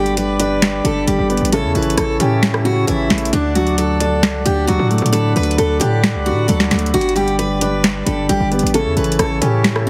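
Triumphant yet dreamy, this half-time trap hip hop excerpt puts a bright, full-bodied picked steel-string acoustic guitar melody up front over a felt-muted upright piano whose soft, intimate accompaniment carries audible action noise, while a pedal harmonium holds reedy, breathing chords. A punchy, heavy 808-style bass with a sine body and noise layer sits up front with a booming analog drum machine of crisp snare, rim click and metallic hi-hats, the drums re-recorded in a small room. The chords cycle through G, A and D, and the mix has light reverb and a heavily compressed, radio-like sound.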